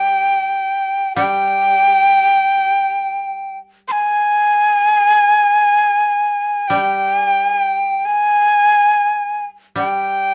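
Japanese traditional chamber music unfolds in free time, calm and austere, in this brief 10.3-second fragment cut from a longer piece. A breathy, bright shakuhachi carries the melody from start to finish, its bamboo tone marked by a crisp, chiffy attack and vibrato, close-miked and up front between G5 and C6. Beneath it, a koto played with fingerpicks supplies accompaniment in a low register from D3 to G3, its woody, dry sound sitting much lower in the balance. Both parts sound together throughout the entire span. A moderate small-room reverb and a dark, warm production frame the pair intimately.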